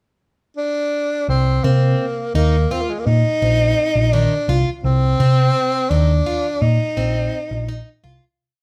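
In a straight, driving 5/8, this brief, intricate progressive instrumental opens with a vibrato-rich tenor saxophone stating a motif-based, classical-style melody up front at 0.6 seconds. At 1.3 seconds a round, punchy hollow-body electric bass enters with a dark, syncopated riff over a Cm7 chord, followed by a bright, shimmering twelve-string acoustic guitar playing an octave-doubled arpeggio ostinato. The band sounds live in one room with light reverb before fading out from 6.6 seconds.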